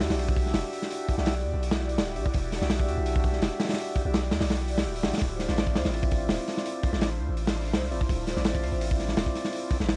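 A crunchy, dark breakbeat kit sits up front in this atmospheric, raw drum and bass and jungle excerpt, its punchy kick dropping out from 4.5 to 5.2 seconds, while a deep, sine-toned 808-style bass with tube saturation holds long notes beneath it. Tonewheel organ stabs spin through a slow rotary speaker with dub echo, and a breathy, detuned pad with chorus and phaser sustains chords in the background as the harmony moves from Em9 to Dm9 at 5.2 seconds. The small room sound is dry and gritty, dusted with vinyl crackle.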